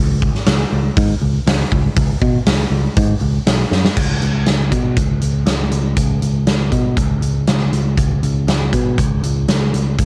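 A picked electric bass opens this short hard rock excerpt, bright and growly, sitting up front from the very start at 0.0 seconds. A huge arena drum kit joins at 0.2 seconds with a punchy kick, medium-tuned snare, hi-hat and crash in a big, natural room sound colored by cassette tape, and a drum fill at 3.7 seconds leads into the second section at 4.0 seconds. The energetic, swaggering groove moves at 120 BPM in a straight 4/4, with the home cassette recording kept largely dry.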